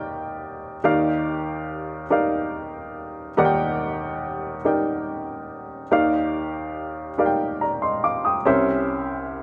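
An echo chamber reverb with a moderate 1.9-second tail surrounds a woody, intimate upright piano that sits up front, its audible action noise and short sustain giving the playing a close, natural presence. This brief gospel passage, cut from a longer piece, moves at a slow 47 beats per minute in a straight 6/8 feel, counted in dotted quarters, and rests in Eb major. The piano plays entirely alone and spans the keyboard from C2 up to Eb6, covering deep bass notes and bright upper tones. It opens on a lush Ebmaj9 chord, and a new phrase begins at 5.9 seconds before the harmony turns to a tense C7b9 at 8.5 seconds. The mood is reverent and soulful, with the warm tone of the instrument carrying an unhurried devotional character.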